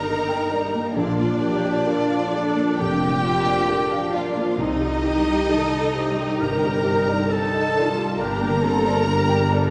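A lush, vibrato-laden violin section carries the melody in this longing, moving cinematic film-score cue at a rubato 67 BPM, joined by a mellow, distant clarinet and a second violin line in the background, while a soft felt-muted upright piano, smooth violas and a bright, ringing fingerpicked harp fill in beneath, expressive cellos, joined at 1.0 s by a focused, close double bass section, anchor the low end, and a wet scoring-stage reverb sets the ensemble further back in the room.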